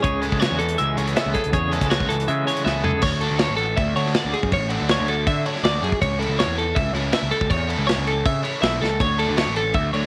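A light studio reverb surrounds this wistful, playful excerpt of math rock and midwest emo at 161 BPM in A major, where a bright, compressed twelve-string electric guitar sits up front with clean picked arpeggios and a fuzzed, punchy bass carries the low end. A twangy, fingered electric guitar with tremolo adds clean accompaniment until 3.0 seconds, when a drum fill moves the harmony from Amaj9/C# to Dmaj9. A double-tracked, biting overdriven guitar riffs in the background, and a mid-forward acoustic kit with a punchy kick and rolled-off top drops another fill at 8.8 seconds.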